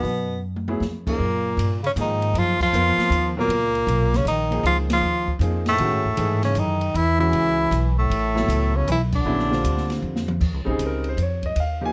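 This hypnotic, open slice of modal jazz in 3/4 swings along at 156 BPM, with the full quintet sounding together from the first beat over a suspended chord, and a short drum fill arriving at 0.4 seconds. The tenor saxophone carries the melody up front, its smooth top, vibrato and scooped notes giving it a warm, singing jazz voice. Beneath it, a clear bass clarinet plays a second line, also with vibrato and scooped notes, until both horns stop at 10.0 seconds as another drum fill leads into a final suspended seventh chord. A vintage-sounding grand piano with short sustain supplies clear, smooth accompaniment through rich major-ninth harmonies, while the pizzicato upright bass sounds woody on its steel strings. The drum kit has a dark, small-room character, with dusky cymbals, a medium-tuned snare and a punchy kick, and the band punctuates the groove with accents at 2.5 seconds and twice more later on. 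Close, detailed miking with little reverb keeps the sound intimate.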